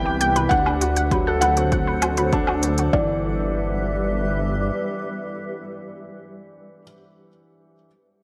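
A moderate concert hall reverb lends this brief fragment of piano and strings electronica a gentle, airy glow, and the mood is luminous and tender in a straight 4/4. A felt-muted upright piano carries the melody up high and close, its thick felt and audible action noise making it intimate, with delay trailing its notes. Beneath it, a dark, woody upright piano plays a riff with its own delay and lasts the longest, until 7.9 seconds, while a granular cloud pad holds blurred, evolving chords through its built-in reverb. A deep, rumbling detuned saw bass sits up front with sidechain pumping, and a nasal analog pluck spins chorused, delayed arpeggios that also pump, stopping at 3.2 seconds. Layered electronic drums, a punchy kick and smooth hi-hat with woodblock, drive the opening drop as the chords move from Cmaj7 to D7 and settle on G6 at 2.9 seconds.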